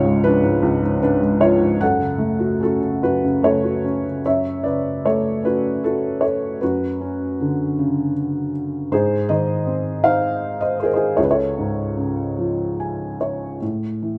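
Classical solo piano in F# minor, dark and reflective, moving in a slow, rubato 6/8 at around 48-54 BPM. A felt-muted upright piano carries everything from C#2 to G#5, its tone soft, boxy and intimate as it sits up front in a moderate recital-hall reverb, drifting through C#7 and F#m into Bmadd9/F#, G# and C#. A brief fill from 12.4 to 13.6 seconds leads to a closing A5 chord in this fragment cut from a longer piece.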